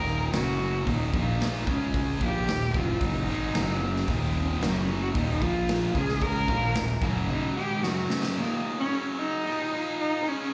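A bowed cello leads this restless, cathartic stretch of quiet-loud alternative rock, its warm, focused tone carrying vibrato and a smooth top as it sits up front, thickened by slapback echo and analog delay, and playing a solo through the opening section. Beneath it, a high-gain distorted guitar pushes a bright, picked riff, while a compressed fuzz guitar riffs further back and a dark, clean electric guitar adds very quiet fingered arpeggios. A growly fingered bass, overdriven and fuzzy, anchors the low end in a straight 4/4. A raw garage drum kit comes in at 0.3 seconds with a punchy kick, a medium-tuned snare and hi-hat, sounding saturated and gritty in a pumping stone room, and it plays a fill at 7.8 seconds. At 8.4 seconds the music moves into a new section where only the cello and the high-gain guitar carry on. The whole excerpt sounds like a live gig heard through the venue's PA, with light club reverb.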